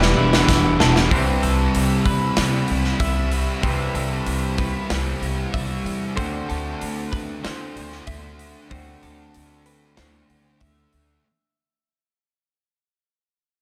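Rock in a shoegaze and dream pop vein, hazy and blissful at 95 BPM in C lydian, this short cut opens on a drum fill from a big, up-front rock kit with a punchy kick, joined briefly by a very quiet, jingly tambourine and a round, gentle FM synth lead, while a swirling, vintage string machine with ensemble chorus and phaser holds chords until 6.1 seconds over a dark, distorted fuzz guitar riff, a lo-fi, slightly broken-up guitar riff carrying reverse reverb, clean twelve-string arpeggios with lush chorus and analog delay, and thumpy, woody upright bass, before a fade-out from 1.1 seconds as the harmony moves from Cmaj7 to D7.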